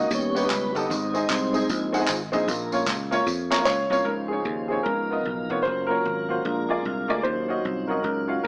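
A swung 4/4 pulse at 151 BPM drives this uplifting, reverent uptempo gospel piece in Db major, with tambourine and handclaps playing until 4.0 s over a growly, punchy thumbed slap bass and a woody, slightly detuned upright piano. A mellow tonewheel organ with key click and slow rotary speaker holds round, dark sustained chords and solos through the opening section, adding a short fill later, while the upright piano slips in a fill just before a warm, natural grand piano enters with the melody at 3.7 s. The harmony moves from Ebaug7 through Dbmaj9 and Gbmaj7 to Ebm9, heard through echo chamber reverb with small-room ambience and a small-speaker sound.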